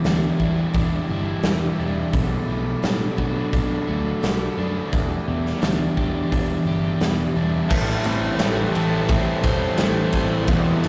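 Hazy and melancholic, this shoegaze and dream pop rock fragment, cut from a longer piece, sets a nasal cornet-stop pipe organ holding sustained chords in the background over a crunchy overdriven guitar riff and a dark, thick fuzz guitar riff, both sitting back in the mix, while a round, foam-muted vintage electric bass and a punchy, up-front big rock drum kit with pumping room sound, crash, ride, hi-hat and a medium-tuned snare drive it along; at 7.7 seconds a bright, double-tracked distorted guitar riff enters up front as the chords move from Em7 and Bm7 to Am7, all bathed in a long cathedral reverb with the rough, tube-saturated character of a rehearsal-room recording.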